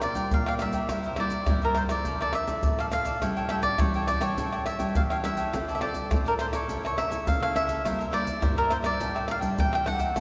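Lively yet bittersweet, this brief samba-and-choro cut in a straight 4/4 sets a crisp, picked cavaquinho melody up front over a second, brighter cavaquinho and a woody, fingerpicked nylon-string guitar with old strings, while a close, soft-handed percussion group of tube shaker, pandeiro, tamborim and tight surdo drives everything from start to finish, all bathed in the long wash of a cathedral-like hall with chords moving from Gm7/Bb through Dmadd9 and A7 toward a closing A7sus4.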